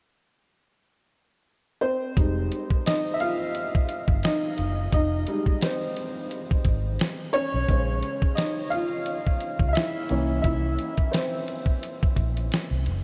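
A woody, slightly detuned upright piano enters at 1.8 seconds with a boxy, tape-worn and muffled tone, and at 2.2 seconds it moves into a solo over Fm9, Bbm7 and C7b9 chords in this nostalgic, hazy lo-fi hip hop excerpt. A gritty, compressed sampler-style drum kit with a thumpy kick, medium-tuned snare and hi-hat joins at the same moment, carrying a light swing on the sixteenths and a crunchy 12-bit edge, while a dark, round, foam-muted electric bass sits underneath. The whole mix is soaked in a huge, dreamy ambient reverb with a slightly flat tuning, keeping the piano and drums up front.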